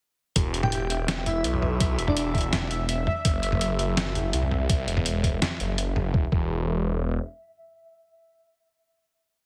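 Dark and heavy, this short half-time drum and bass piece at 166 BPM drops in at 0.4 seconds with a swirling, thick, phased detuned saw bass playing chopped, up-front phrases under a gritty, pitched-down boom bap sampler-style kit of closed hat, snare and low tom and a thumpy, tape-warm electronic kick in a small room. A pulsing gated texture holds a high E5 with chorus and reverb, while an airy, dreamy lead adds short bright answering phrases between 0.6 and 2.2 seconds, and the harmony moves from E5 to Esus2. The drums drop away by 6.4 seconds, leaving the bass to ring out into the final note in a heavily compressed, radio-like sound with light digital ambience until it fades around 7.2 seconds.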